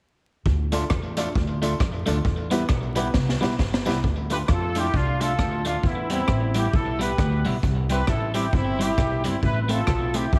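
A swung 4/4 ska groove at 134 BPM drives this mischievous cut from a longer piece in D dorian, with upright bass and a street-band drum kit starting together at 0.5 seconds. The kit sits up front with an airy, big-room polish, pairing a high-tuned snare and boomy kick with hi-hat and rim clicks, while the pizzicato bass gives a woody, steel-strung low end. A bright, twangy electric guitar at the edge of break-up carries the accompaniment through tape echo. It is joined early by short, dark piano stabs and a jingly tambourine in the background, and both drop out around 4 seconds as a drum fill comes to an end. From 4.3 seconds a horn section takes the melody up front, its pop-style ensemble sound shaded with vibrato. Chords move from Dm and Em to C and Am under light studio reverb and a layer of vinyl crackle.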